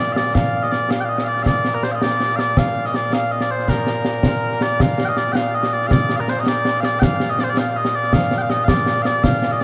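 Mellow, sweet small bagpipes carry the melody up front in this excerpt of Scottish pipe music, their continuous, vibrato-laden line sounding proud and stirring at 108 BPM in a straight 6/8 lilt in Bb major. Close, acoustic concert snare and bass drums with dark cymbals join at 0.1 seconds and sit up front alongside the pipes. A wet cathedral reverb with a 4.8-second tail places the whole performance in a vast, echoing space as the same section is played twice, cut from a longer piece.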